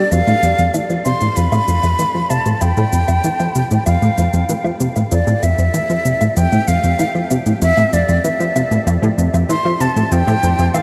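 A punchy, funky analog bass riff drives this luminous, expansive excerpt of sequencer-driven ambient space music, with a breathy, mellow silver concert flute melody carrying vibrato and delay up front, a faint, evolving, detuned pad sustaining bright, resonant chords beneath, and overdriven electronic cabasa and woodblock ticking along, all set in a vast, echoing space with a huge reverb tail.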